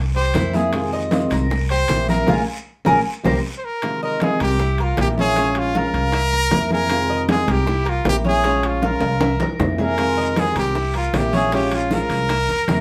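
Nostalgic and sultry, this excerpt of Cuban son and guajira moves at 156 BPM in a straight 4/4, cycling through a minor-flavored progression of Fm7, C7 and Bbm7. A punchy trumpet with vibrato and scooped notes leads up front in a pop style, opening with a solo over the first 3.8 seconds while the band hits an accent from 2.3 seconds. Beneath it, a dark, thumpy upright bass on gut strings sits forward, joined by the metallic shimmer of a picked Cuban tres playing arpeggios on double strings and a boxy, fingerpicked old ladder-braced acoustic guitar with aged strings. The drums stay in the background: bright, damped congas, round low-tuned bongos, and ringing metal-shelled timbales, with a drum fill from 8.8 to 10.0 seconds. A raspy, saturated guiro drops out in the middle and returns at 10.0 seconds. The band plays live in one room, wrapped in a wet studio reverb.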